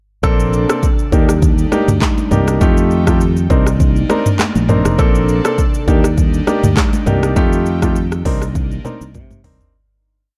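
Grand piano with syncopated chords, an airy, breathy pad with chorus, a punchy, bouncy fingered electric bass with slides, and an up-front afro-pop drum kit with a deep kick, metallic hats, syncopated rim clicks, shaker, handclaps and toms open this mellow, hypnotic afrobeats piece at 101 BPM in C dorian, cycling through Bbmaj9, Ebmaj7, F9 and Cm9, with very quiet, bright, high-tuned congas joining at 1.1 s, a dark production with faint mains hum, and a fade-out from 7.4 s under a drum fill from 8.6 s.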